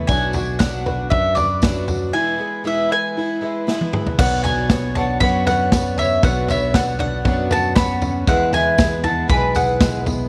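A lightly reverberant, natural-sounding cut from a longer indie folk piece, uplifting and hopeful, with a building arrangement in a straight 4/4 feel that moves between Bm and E chords. An up-front, round mandolin carries the melody over shimmering, octave-doubled picked twelve-string acoustic guitar, direct fingered electric bass, woody upright piano arpeggios with audible action noise, and a punchy country drum kit with bright cymbals, while a jingly, band-limited tambourine sits in the background. After a drum fill from 3.7 to 4.2 seconds, a distant, airy bamboo pan flute enters at 4.2 seconds with a second line marked by chiff and vibrato.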